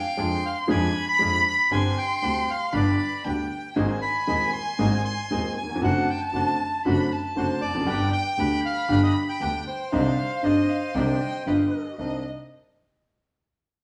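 Melancholic and dramatic, this rubato tango excerpt cut from a longer piece sets a reedy, up-front bandoneon melody against an expressive violin second line with vibrato and portamento, while a woody upright piano with audible action noise, a bowed double bass with light vibrato and quieter background bandoneon stabs fill out the accompaniment, a distant silver flute joins at 10.2 seconds, and a stone room's reverb surrounds the band playing live over chords moving from Ddim/F through Ab and D7/F# to Cmadd9.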